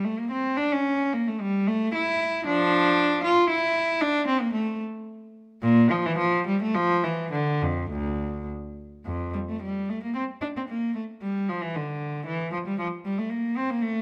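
A single cello sits up front in a recital hall, surrounded by a moderate reverb that lets each note decay into the room. This is a grave yet flowing classical piece in the manner of a baroque suite movement, a short fragment lifted from a longer work in D minor. One bowed player carries everything alone from 0.0 to 14.0 s, with a rich, gut-string tone played in period style that takes on a reedy edge. The line moves through a range from D2 to F4 in 3/4 time at roughly 100-117 BPM, and the rubato lets the pulse breathe and stretch. The opening material returns at 9.1 s, giving the brief passage a sense of restatement as it carries on.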